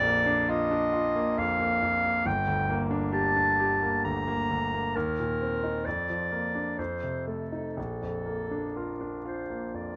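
This is a romantic classical duo for clarinet and grand piano, lyrical and warm in mood, unfolding in Bb major at a slow 60-70 BPM in 3/4 with a flexible, rubato feel. The clarinet carries the melody throughout, its tone warm and roomy with a slightly distant quality, yet it sits up front in the balance in a clear classical style. The concert grand piano supplies the accompaniment, bright and brilliant with a deep bass, sounding present and polished alongside the soloist. The harmony moves gently from Bb through Gm, Cm7/Eb and Bb/F to an F7 that resolves home to Bb at 7.8 seconds. Close, detailed microphones capture both instruments intimately, with light reverb adding a touch of air to this short passage cut from a longer piece.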